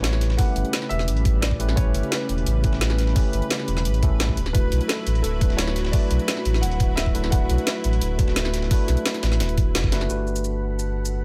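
This short cut from a lush, uplifting liquid drum and bass track at 173 BPM opens with a dark, boxy baby grand piano carrying the melody through dub echo alongside a worn, slightly out-of-tune tine electric piano with 12-bit sampler grit and delay, over a thick, detuned unison pad with chorus and a deep, up-front sub bass as the harmony moves from A9 to D69. An overdriven drum and bass kit with a woody snare and bright hats is layered with a gritty, tape-toned sampler-style kit sitting in the background, while a knocking, overdriven electronic kick enters at 0.4 seconds. The piano melody stops at 8.7 seconds, and after a full-band accent at 9.7 seconds the harmony shifts to Gmaj9 as a filter sweep passes over the electric piano from 10.1 seconds.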